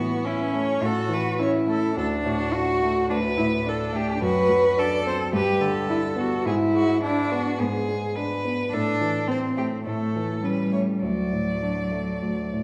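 A single bowed cello sits up front with a clear, focused tone and steady vibrato, carrying the second line from F#3 to B4 and sounding the most prominent of the three parts. The violin takes the melody between E4 and D5, its bowed, vibrato-touched sound set back at a distance. A grand piano supplies polished, up-front accompaniment from D2 to D4, its notes warm and short in sustain. This graceful, cheerful classical-period movement for piano trio moves at a quick 106 BPM in 4/4 and D major, with a rubato feel and a harmony that travels through D7/F#, G, E7/G#, Am and A7 before settling on D at 11.0 seconds. All three instruments play throughout the 12.6-second passage, which is cut from a longer piece. A recital hall reverb with a 1.4-second decay wraps the trio in a dark, warm production.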